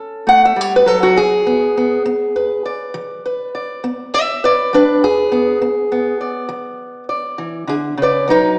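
A slow, straight 12/8 pulse carries this short, soulful and gritty stretch of acoustic country blues, cut from a longer piece. A lone fingerpicked archtop guitar sits up front with a boxy body and audible finger squeak, moving from A7 to E7 at 1.2 seconds and ranging from B2 to F#5. A wet recital-hall reverb surrounds it, though the overall sound has a small-speaker character.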